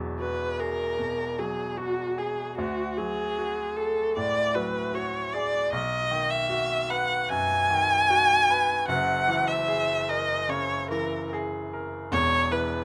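Hazy and wistful, this rubato impressionist classical excerpt in 4/4 sets a rich, focused solo viola melody, bowed with vibrato and entering at 0.2 s, up front above a clear, natural grand piano accompaniment that moves from Eadd9 through D, B and F#9 to E5 at 12.1 s, in a lightly reverberant space.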